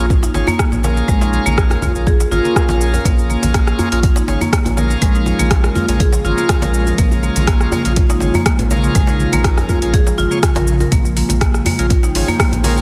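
A woody, hard-mallet marimba carries arpeggios through this warm, hypnotic afro house excerpt, joined by shouting, lightly overdriven tonewheel organ stabs with key click and slow rotary speaker, both pumping against the deep electronic kick and trailed by analog delay. A round sine sub bass holds a single Bbm7 chord's low end while an afro-pop kit with metallic hats, rim click and shaker, very quiet congas and a rattling djembe in the background fill out the swung groove. A faint electronic swell arrives at 2.3 seconds before an ethereal, detuned pad with ensemble chorus slowly enters behind at 4.2 seconds.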